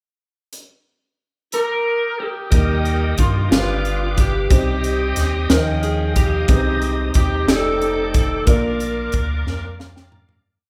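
This short, hopeful gospel piece moves at a slow 60 BPM in a straight 6/8 feel in Eb major, opening at 0.5 seconds with a crisp fusion drum kit whose high-tuned snare, punchy kick, hi-hat and toms sit up front in a small, pumping room sound. At 1.5 seconds a bright, tight saxophone section with vibrato and a soft attack carries a vintage, jazz-style melody built on call phrases, alongside an electric slide guitar with a dark, slightly broken-up tone playing hook phrases. At 2.5 seconds the verse begins as a dark, mellow grand piano adds held chords with grace notes, a reedy tonewheel organ holds a clean pad through a fast rotary speaker with chorus vibrato and key click, and a rubbery, hollow square bass plucks a bouncy gospel line. The harmony moves through chords such as G7, Eb9 and F13 before settling on Bb, all in a moderate recital hall reverb that suggests a church or concert hall. 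The music fades out from 8.5 seconds, and the drums and piano play closing fills from 9.5 seconds.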